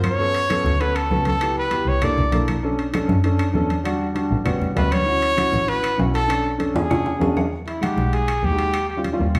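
Lively and danceable, this short cut from a longer Afro-Cuban jazz piece moves in a straight four. A dark, mellow concert grand piano sits up front, its deep bass anchoring rich extended chords such as Gmaj9#11, C13 and Dmaj9. Beneath it, a single player bows a warm double bass with vibrato, soft attacks and expressive portamento. The congas and timbales are close and dry: ringing, medium-tuned congas played with soft hands in the background, and metal-shell timbales, while very quiet, woody claves sound as if in a small room. A clear trumpet carries the melody with light vibrato in a jazz style, pausing and returning at 4.8 seconds. After a drum fill at 6.8 seconds, the trumpet takes a solo from 7.5 seconds, all heard from further back in a large studio with generous reverb.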